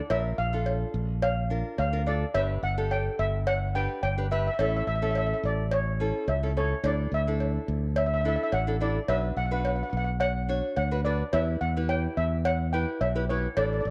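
Bouncy and carefree, this short calypso passage, cut from a longer piece, moves at 107 BPM in a straight 4/4, with an up-front, shimmering steel pan carrying the airy melody struck with medium rubber sticks. A small, fingerpicked nylon-string guitar with fresh strings supplies the accompaniment, while a growly, direct electric bass sits up front and a metallic cowbell rings in a small room over chords moving from Bb through G, A, Dsus2 and Bm to Em. The home cassette recording, tuned to A4 = 435 Hz, gives the pan and guitar a tape-tinged character, all set in light studio reverb.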